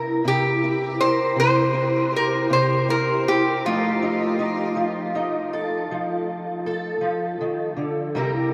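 Acoustic country blues in a rollicking, laid-back 12/8 at 53 BPM, this short excerpt sets a dark, boxy parlour-style fingerpicked steel-string guitar with an ensemble chorus under a nasal, metallic lap resonator guitar played slide with fingerpicks and a diffuse ambient delay, whose melody runs from 0.3 to 4.7 seconds as the chords move from C7 to F7, both guitars up front in a dreamy mix soaked in a huge reverb.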